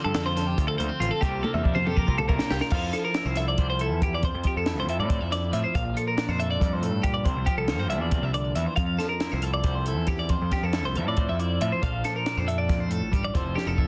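Two clean, twangy twelve-string electric guitars open this bright, intricate excerpt of math rock and midwest emo at 277 BPM in 7/8: one plays chordal accompaniment while the other spins high arpeggios with a slapback echo. A punchy, overdriven picked bass and an up-front compact cocktail kit with a high-tuned snare and tight kick join almost at once, and a drum fill at 1.4 seconds leads into the longer second section. Chords move from Dm7 through C7sus4 and Bbmaj9 to a closing Fmaj7, all in a dry, dense, heavily limited modern mix.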